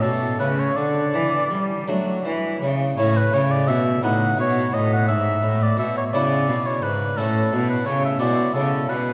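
Classical, baroque-style sonata movement with continuo, heard in a brief section cut from a longer piece, radiant and dance-like in 6/8 with uneven beats and free rubato. A warm oboe with light vibrato and a soft attack carries the melody up front, while a plucked, full harpsichord with two sets of strings fills in the accompaniment and a rich, nasal, gut-string cello, bowed by one player, holds the bass. All three play throughout the 9.1 seconds, bathed in the long, wet reverb of a church.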